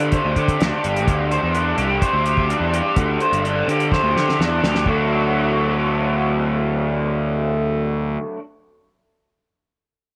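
This short psychedelic rock excerpt opens at once with a bright, overdriven electric guitar riff, double-tracked and up front, its lo-fi edge colored by flanger. Beneath it sit a punchy fuzz bass and a cloth-damped, thuddy acoustic drum kit. The tempo is 127 BPM in a straight 4/4, in D mixolydian with tuning at A4 = 444 Hz, and the mood is kaleidoscopic and hazy. The picked guitar spans D3 to C5, while the picked bass, direct and amped with overdrive, sits from G1 to D3. The drums are dry and dark, with a fat snare, a tight kick and a rolled-off top; they play a fill from 3.9 seconds and stop at 5.0 seconds. The harmony moves from Gsus4 to D at 4.9 seconds, and guitar and bass carry on in a small room ambience until the piece is cut off.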